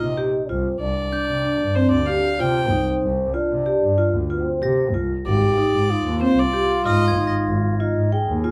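A moderate studio reverb gives this short cut from a longer contemporary chamber piece a gentle sense of space, and the mood is hypnotic and pensive in an uneven 7/8 metre with a straight feel. A bowed double bass sits up front with a focused, smooth-topped tone and vibrato, while a vibraphone with hard mallets spins metallic, ringing arpeggios, its motor off and its sound slightly boxy. Above them a single bowed violin carries the melody with a bright, nasal, earthy voice, light vibrato and an airy bow, until it drops out at 7.3 seconds. A cup-muted trombone plays a second line in a veiled, breathy, intimate jazz manner, with soft attacks and scooped notes that lend it a vintage quality. From 1.1 seconds a glockenspiel struck with brass mallets adds a bell-like, sparkling shimmer in the background as the harmony moves from C minor to Csus2 and then to A-flat.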